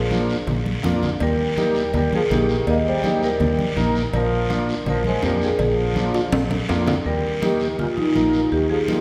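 A boxy marimba carries the melody over a bright, distant trombone line and a round, foam-muted electric bass in this festive, danceable cumbia excerpt, joined almost at once by mellow vintage combo organ with light vibrato, hard-handed damped congas and a raspy guiro, while ringing cowbell and timbales sit close and dry in the background from 0.5 to 7.0 seconds and drum fills punctuate the groove, all set in a lush concert-hall reverb.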